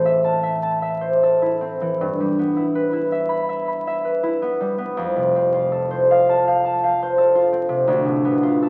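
A solo concert harp opens at once, its mellow, ringing tone set up front in a wet recital hall reverb as the instrument begins this short classical excerpt in A minor. The mood is wistful and mysterious, and the tempo breathes freely in rubato around 74 to 86 BPM in 4/4. Fingerpicked across a span from D2 to B5, the harp moves through A minor, then Em/G at 2.0 seconds and F at 5.0 seconds, before settling on Bm7b5/D near 7.9 seconds. The sound carries the patina of a very old 78 rpm record, with vinyl crackle hovering around the resonant hall. Cut from a longer piece, the fragment plays for just under nine seconds and stops at 8.7 seconds.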